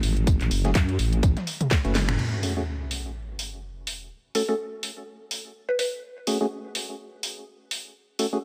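A nasal, saturated vowel-sweep wobble bass anchors this gritty, swaggering bass house excerpt at 125 BPM in F# minor, its chorus and overdrive pumping against a tight electronic kick until the bass drops out at 2.2 s, where a sub drop lands as an impact. A garage drum kit with a cracking snare, hi-hat, handclaps, finger snaps, toms and crash cymbal drives the swung groove throughout, joined until 2.1 s by a very quiet, sampler-style tambourine and snare, while a hollow, wave-folded organ stab pumps with delay and carries a filter sweep across the later section. From 4.3 s a woody, round mallet-like synth pluck adds a mellow melody bathed in lush chorus and digital delay, all set in light reverb.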